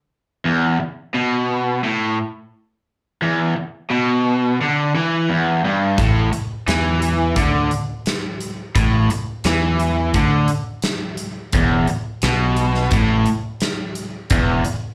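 A raw, bright, double-tracked garage guitar opens at 0.5 s with an overdriven, slapback-echoed riff moving through E5 and A5 chords, joined at 6.0 s by a growling, overdriven picked bass and a big acoustic rock kit with a fat snare and tight kick, giving this driving, raunchy blues rock and southern rock excerpt at 86 BPM the lightly reverberant sound of a live club gig heard through the venue's PA.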